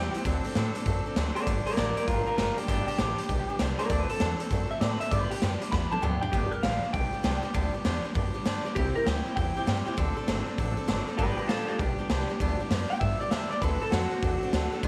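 A small room with a touch of light reverb frames this rowdy, rollicking rockabilly excerpt, cut from a longer piece and driven by a swung eighth-note feel. The raw garage drum kit sits up front with gritty saturation, a punchy kick, a medium-tuned snare, hi-hat and toms, all ringing in a pumping stone-room sound with a rolled-off top. Beneath it, the pizzicato upright bass thumps out woody low notes, while a picked steel-string acoustic guitar picks out bright accompaniment through a simple progression that moves between D7, G and C. The lead electric guitar, twangy and slightly broken-up through a small old amp with tape echo, carries the melody in a lo-fi tone. A drum fill at 5.7 seconds launches the second section at 6.3 seconds, where that guitar takes a clean solo that runs to the end.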